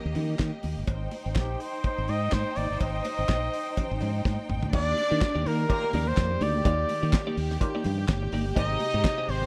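Disco with a glamorous, danceable swing, opening on a clear, close-miked flugelhorn melody under a low-pass filter sweep, a distant, lush bowed string line, a bright, growly fingered bass up front, and a damped 70s kit with fat snare, tight kick, handclaps and toms, dotted with very quiet high-tuned congas and a dry cowbell. After a drum fill, at 4.7 seconds a clean, compressed picked guitar, a mellow muted clav and a soft, floating sul tasto string section holding sustained chords join in over a move from Ebmaj7 to Abmaj7. The production is dark, with light studio reverb, and the passage is cut from a longer piece.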